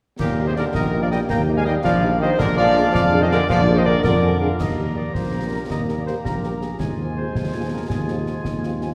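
A rousing, proud military-style march for wind band opens at 0.2 s in Eb major, moving at 109 BPM in a straight 6/8 with the pulse on the dotted quarter, and this brief passage is cut from a longer piece. A mellow solo cornet with light vibrato carries the melody, while a bright, present woodwind section and a clear euphonium play second lines, and the euphonium drops out at 4.6 s as the harmony returns to Eb. A warm trombone section holds tight sustained chords in the background, and an up-front tuba with a dark, smooth top anchors the bass. A very quiet French horn section joins at 0.4 s with distant, punchy accompaniment. Concert snare drum, clash cymbals and concert bass drum sound close and acoustic, all set in a reverberant concert hall heard from further back in the room.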